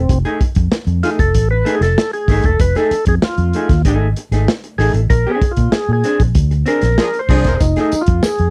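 A percussive tonewheel organ opens this playful funk fragment together with a round, foam-muted fingered electric bass, the organ carrying the solo melody through a slow rotary speaker with audible key click. A crunchy breakbeat kit joins almost at once, its gritty, saturated kick, snare and hi-hat sitting up front with a rolled-off top, while a clean hollow-body jazz guitar adds dark, picked accompaniment. The harmony moves from F7#9 to Bb9 at 5.1 seconds, where the band begins a run of accents. A clear horn section with light vibrato and slapback echo adds a brief second line at 7.0 seconds, and a jingly tambourine sits in the background from 7.6 seconds as the F7#9 returns. The sound is dry and close, in the manner of a 1970s studio, and the passage is cut from a longer piece.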